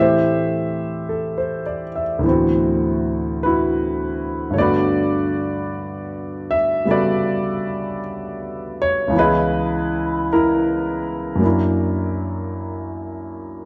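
A solo concert grand piano opens this slow, late-night jazz ballad, sitting up front with a warm, natural tone, deep bass and audible action noise that makes the playing feel intimate and close. Its swung phrasing moves through rich chords from Am7 and D13 to a lingering Gmaj9, then C#m7 and F#aug7. A moderate echo chamber reverb and a dark production give this short cut from a longer performance a hushed, smoky atmosphere.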